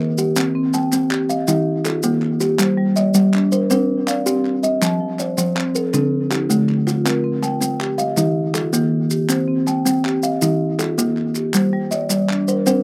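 Hypnotic and warm, this southern African traditional piece moves in a straight 12/8 at 107 BPM, built on a mbira-style interlocking cycle in C equiheptatonic. A woody, mellow kalimba sits up front beside a full, close-miked marimba, both playing arpeggios with slapback echo, while crisp group handclaps and grainy maracas, the maracas joining at 0.2 seconds, supply the percussion. Recorded outdoors with light reverb, the cycle turns through Cm, Eb, Gm, F and Dm in this fragment cut from a longer piece.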